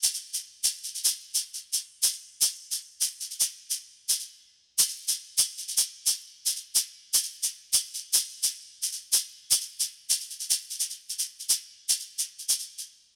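A lone tube shaker opens the recording, its grainy, bright acoustic sound sitting up front in a small room with light reverb. This is West African traditional music in 12/8 at 101 beats per minute counted in dotted quarters, with a straight feel and a warm, hypnotic mood. The shaker carries the whole excerpt on its own, moving into a new section at 3.0 seconds and playing through to 12.8 seconds.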